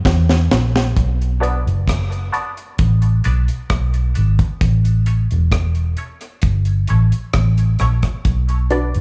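The round, foam-muted electric bass stands out most in this dub reggae excerpt, sitting up front with a dark, amped, punchy tone in its low register. A deep reggae drum kit plays alongside it from the start, dry and acoustic, with a tight kick, a high-tuned snare, rim clicks and hi-hat, opening with a drum fill during a short break before the main section begins at 1.0 seconds. The mood is deep and heavy, moving slowly at 66 BPM in 4/4 with a straight feel in B minor, the harmony shifting from Bm to A and back to Bm. A filtered dub chord stab enters at 1.4 seconds, its detuned sawtooth and square-wave sound with a sub octave carrying a fast attack, short decay and an evolving filter sweep, treated with phaser, high-pass filtering and dub echo. A mellow, clean electric guitar sits in the background between 1.4 and 4.3 seconds, compressed and fingered, also high-pass filtered and sent through dub echo. 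A small room reverb gives the mix a close, studio feel, and the clip is cut from a longer piece.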